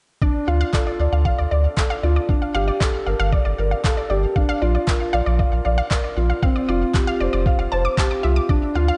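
A thumpy, muffled electronic kick and overdriven handclaps drive this straight 4/4 piano and strings electronica at 116 BPM in D minor, where a round sine sub bass pumps beneath a soft, felt-muted upright piano riff touched with delay, and a detuned sawtooth analog pluck spins bright, chorused, delayed arpeggios that pump too, the harmony cycling through Dm, Gmadd9, Bb and Fsus2 in a dark, lightly reverberant mix that feels moving and hypnotic across this short cut from a longer piece.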